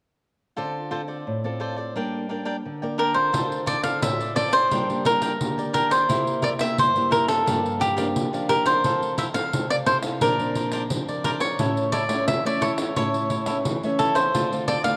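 A picked cavaquinho and a small, fingerpicked nylon-string guitar open this yearning yet lively samba-choro excerpt in D minor at 87 BPM, moving from Dm7 to Gm before an up-front cavaquinho melody enters at 3.0 seconds and a jingly pandeiro played with soft hands joins at 3.3 seconds, all set in a moderate plate reverb as the harmony travels through C7, Fmaj7 and Bbadd9 to an A chord.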